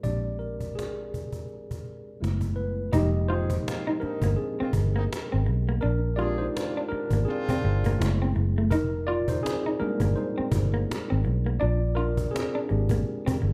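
This R&B and neo-soul excerpt moves at a relaxed 83 BPM in 4/4 with a swung sixteenth-note feel in F dorian, setting a late-night, introspective mood. A worn, slightly out-of-tune tine electric piano takes the solo throughout, lightly overdriven and heard through its built-in speakers with plate reverb, sitting up front over chords moving among Bb13, Gbm11 and Fm11. Beneath it, a vintage muted fingered electric bass stays low, dark and round, foam-muted and forward in the mix, while a snappy cajon with snares, played with soft hands, sounds distant in a large room. At 2.9 seconds a dark, slightly broken-up electric guitar through a small old amp enters with a picked second line bathed in plate reverb. A warm horn section with light vibrato and a smooth top adds pop-style stabs from 3.3 to 8.2 seconds, all within a moderate studio reverb and a rough home-demo mix.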